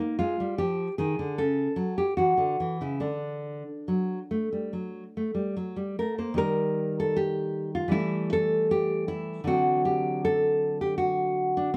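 Set in a moderate studio reverb, a full-bodied, fingerpicked nylon-string guitar sits up front as the sole voice in this grave, introspective excerpt from a baroque-style classical dance, moving in 4/4 at 70-79 BPM with a rubato feel and shifting into a new section at 6.4 seconds.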